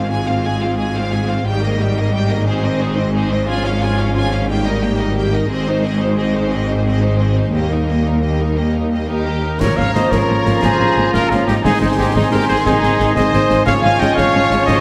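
In a straight 12/8 at 118 BPM in Ab major, this triumphant, heroic film-score excerpt opens with lush bowed strings (a rich, focused violin melody over a darker, woody second violin line, clear violas, and rich cellos and distant double basses on the bass) beneath dark, distant French horn chords, building until a clear, up-front trumpet enters with soft-attack stabs at 9.1 seconds and, at 9.6 seconds, airy flutes, a bright clarinet, a warm oboe, very quiet roomy trombones and concert snare, clash cymbals and bass drum join, all bathed in a moderate scoring-stage reverb.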